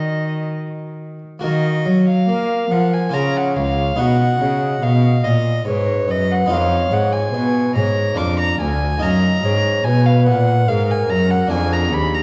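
A dark, reverberant recital-hall sound frames this grave, introspective excerpt of a baroque-style sonata movement in E-flat minor at 72 BPM in 3/4, where an airy, distant wooden flute carries the melody with expressive vibrato beneath a reedy, gut-strung violin on the second line, while a round, plucked harpsichord accompanies and a rich, bowed cello anchors the bass, both strings sitting up front.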